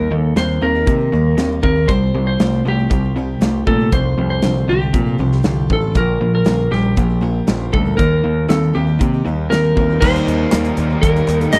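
A dry, close 1970s-style studio sound frames this swaggering, confident classic rock excerpt at 118 BPM, where a clean lap steel played with fingerpicks and slide carries the melody through slapback echo over a full-bodied jumbo acoustic guitar picking in the background, a bright, compressed distorted electric guitar riffing very quietly beside a dark, hollow-body overdriven semi-hollow guitar, and a growling, overdriven electric bass up front, with a big rock drum kit entering at 0.4 s with a punchy kick and bright cymbals, a lightly overdriven tonewheel organ with a slow rotary speaker arriving at 9.7 s, and crisp group handclaps joining at 10.5 s.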